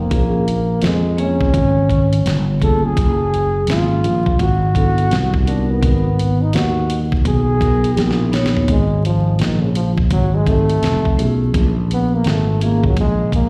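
Jazz-hop at a swung 84 BPM in G# dorian, this nocturnal, mellow excerpt sets a close-miked, punchy trombone melody with slapback and tape echo over a growly, bright fretless bass and gritty, compressed sampler-style drums with a thumpy kick and fat snare. Soft-mallet vibraphone adds metallic, ringing chords with slow motor vibrato, moving through changes such as A#m7, F#maj9 and G#m7. A drum fill at 8.0 seconds leads into a forceful trombone solo from 8.7 seconds over G#sus2 and F7, all heard as a live gig through a venue PA with recital hall reverb and vinyl crackle.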